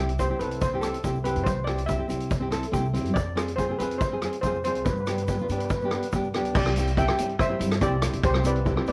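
A straight 4/4 pulse at 142 BPM drives this carefree, festive calypso in C major, cut from a longer piece. A shimmering steel pan, a double-seconds instrument struck with hard rubber sticks, carries the melody with a slapback echo. Beneath it, a full-bodied, fingerpicked nylon-string guitar sits up front, while a woody, growly upright bass with steel strings plays pizzicato. The street-band drum kit comes in at 0.1 s with a boomy kick, rim clicks, hi-hat and dark crash cymbals in a small room, and a grainy egg shaker sits in the background from 0.2 s. The harmony moves from C through Fm and G before settling on Cadd9 as a new section begins at 6.5 s. The whole recording has a moderate studio reverb and the worn, warbling character of old cassette tape, with pitch drift and lossy compression artefacts.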